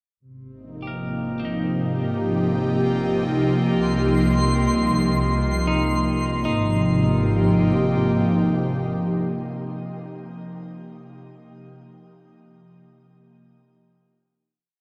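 An airy, breathy pad sits up front in this short, weightless ambient piece, holding slowly shifting chords with a soft, detuned, mellow tone thickened by chorus and shimmer reverb. Beneath it, a muted double bass section, bowed con sordino with vibrato, sustains dark, veiled root notes. A clean electric guitar scatters picked arpeggio notes through harmonic tremolo, delay and its own shimmer reverb. Both bass and guitar fade in from 0.2 seconds to 6.4 seconds, giving the opening a gradual, peaceful bloom. From 3.8 seconds a twinkling granular texture holds a single high note, sparkling with an octave-up shimmer. The harmony moves from Abadd9 to Cm and settles back on Abadd9 for a final held chord, and the piece sits in a vast cathedral reverb that fills the space with long, rolling echoes.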